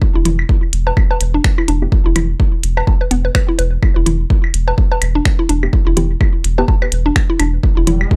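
A swung 4/4 pulse drives this cool, clinical minimal techno excerpt, anchored by a punchy, overdriven analog kick that sits up front with the roomy character of a large space. Clicky, tape-warm hi-hats and finger snaps from a sparse electronic kit tick around it, while analog toms and woodblock, carrying the boxy air of a small room, add tape-echoed accents. A thick, deep sub bass on a sustained triangle tone pumps against the kick, and a woody, round FM pluck with a sub octave plays the riff through chorus and tape echo, ducking in the same pumping motion. A muted, detuned sawtooth dub chord stab with a filtered pluck appears briefly near 1.8 seconds and returns from 5.6 to 6.6 seconds, its chorus and tape echo giving it a mellow haze as a filter sweep runs across the stab. An electronic riser surfaces at 7.8 seconds, and the whole dry, gritty hardware recording carries little reverb.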